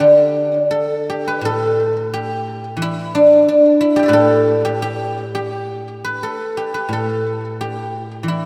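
Serene and pastoral, this brief cut from a longer Chinese traditional piece features a solo guzheng in 2/4 with a free, rubato feel, tuned slightly high at A4 = 444 Hz. The acoustic guzheng, played with fingerpicks, sits up front with a mellow, silvery, ringing tone that spans from A2 to A5. A lush hall reverb with a 2.5-second tail soaks the mix in a dreamy haze, and a new section begins at 1.4 seconds and carries through to the close at 8.5 seconds.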